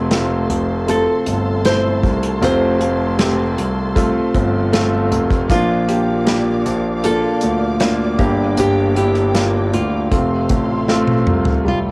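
A homemade cassette sound with a small-room ambience and moderate spring reverb frames this emotional, hopeful pop ballad, cut from a longer piece and moving at a gentle 78 BPM in a straight 4/4 in F major. A classical nylon-string guitar carries the melody, fingerpicked with audible finger squeak, while a woody, intimate upright piano supplies the accompaniment up front, its action noise and long sustain clearly present. A concert grand piano anchors the bass with a deep low end, and a lush, distant studio string section holds sustained chords with expressive vibrato. An airy acoustic drum kit played with bundle sticks keeps time from 0.1 seconds, its tight kick and medium-tuned snare sitting up front alongside hi-hat and toms. The harmony moves from F to Bb, then Gm, and back to F, with a drum fill from 10.9 seconds closing the passage. Cassette tape colours the guitar, upright piano, strings and drums.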